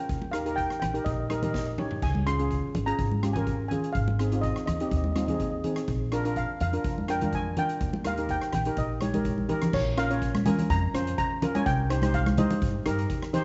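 A straight, bouncy four-beat calypso groove sets a carefree mood in this short cut from a longer piece: a mellow lead steel pan, dark and smooth with a cassette-tape tint, carries the melody over an up-front, shimmering double-seconds pan accompaniment, while a woody, thumpy pizzicato upright bass anchors the low end, a polished street-band drum kit with dark cymbals and a boomy kick adds fills at 1.5 and 9.4 seconds, and bright, thin-skinned congas join in, all captured as a home cassette recording with light reverb and small-room ambience.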